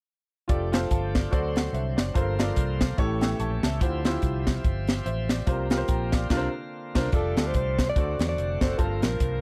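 From 0.5 s an uplifting, soulful uptempo gospel groove in F major swings at 145 BPM, with a tight, dry funk drum kit up front, a dark, round fingered electric bass, an intimate baby grand piano with audible action noise that slips in a fill at 3.0 s, and a shouting tonewheel organ holding sustained chords through a slow rotary speaker and light overdrive. After a band accent, a breathy alto saxophone joins the band at 7.1 s with a mellow, scooped, vibrato-laden jazz melody, all in a close, lightly reverberant 1970s-style studio recording cut from a longer piece.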